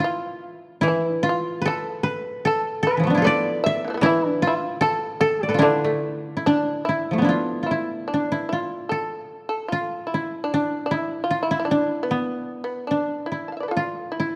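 Japanese traditional chamber music in D kumoi, this solitary, still excerpt drifts in a rubato 2/4 at 75 BPM: an up-front, mellow koto carries the melody, a buzzing, percussive fretless shamisen plucked with a plectrum traces a second line, and a dry, woody second koto played with fingerpicks gives accompaniment until 8.1 s, within a moderate stage reverb and a dark production.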